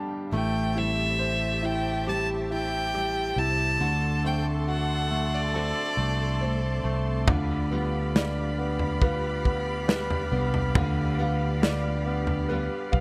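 A close, smooth solo violin carries the melody with bowed vibrato from 0.3 to 6.9 seconds in this hopeful, tender pop ballad, cut from a longer piece and moving at a slow 69 BPM in straight 4/4. A clear, natural grand piano accompanies throughout and adds brief fills at the opening and the close, while a bright, intense string section holds lush sustained chords beneath. A full-bodied nylon-string guitar sits in the background, fingerpicking arpeggios coloured by a chorus effect, and a dark, round fingered electric bass sits up front. At 7.3 seconds an acoustic drum kit enters with a tight kick, medium-tuned snare and toms in a small-room sound. The harmony moves from Am7 to D7 to G7 under light reverb and a bright 1980s-style digital production.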